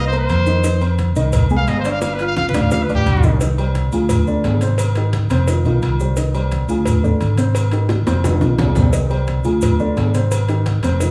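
This passionate, danceable salsa excerpt opens with a bright, punchy trumpet solo carrying the melody with vibrato and a slapback echo, over a dark, mellow grand piano with deep bass and short sustain, and a round, up-front fingered electric bass. The tempo is a brisk 174 BPM in straight 4/4, and a drum fill arrives at 2.0 seconds before the trumpet drops out at 3.4 seconds, where the music settles into C minor. From there the piano and bass carry a repeating cycle of Cm, Dm7b5, Abmaj7 and F5, with a second drum fill at 7.9 seconds. The percussion is dense: thick-skinned, low-tuned congas sit in the background, round cowbell and bongos sound close, ringing metal-shelled agogo bells and timbales come from a distance, and grainy maracas add a mellow, dry texture. Light reverb gives the whole a small-room ambience.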